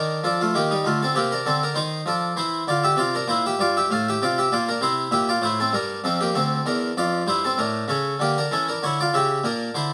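Classical music in a baroque-style suite movement, this short excerpt from a longer piece is played by a single harpsichord in D minor, tuned to A4 = 439 Hz. The mood is flowing yet grave, moving in 12/8 at about 65 beats per minute counted in dotted quarters, with a rubato feel that lets the pulse breathe. The French-style instrument sounds plucked and brilliant, its octave strings adding sparkle and body across a span from D2 up to F5. Set up front and mid-forward in a light reverb, the harpsichord rests on D minor before shifting to E half-diminished at 5.7 seconds and arriving on A major at 7.6 seconds. That closing chord sounds as the clip ends at 9.9 seconds.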